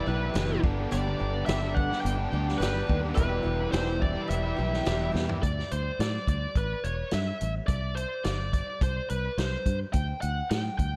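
A straight 4/4 pulse at 106 BPM drives this wistful, dusty folk and heartland rock excerpt in E minor, where a biting, up-front lead guitar with overdrive and tape echo carries the melody throughout over a round, foam-muted fingered bass and a vintage drum kit with a tight kick and rolled-off top. For the opening stretch, a boxy picked swing-style acoustic guitar with lush chorus sits in the background beside a crunchy, double-tracked overdriven guitar riff and a very quiet, flute-like tonewheel organ with vibrato and rotary speaker holding sustained chords. A drum fill at 5.1 seconds leads into a sparer passage from 5.4 seconds, moving through D5, A5 and C5 power chords in a small room with light reverb.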